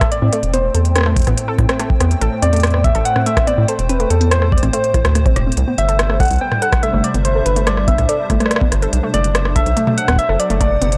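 A rubbery, up-front square-wave bass with tube saturation drives this eerie, cerebral IDM excerpt at 143 BPM in A dorian, entering at 0.2 s beneath an overdriven, deep electronic kick, an organic electronic kit of crisp hi-hats, rim clicks and toms, warbling, dusty plucked arpeggios through chorus and tape echo, a hollow, flute-like pad in ensemble chorus, and a round, keys-like FM lead melody colored by chorus, phaser and tape echo, over chords moving from Am7 to C to Bm in a gritty, cassette-tinged hardware recording with light reverb.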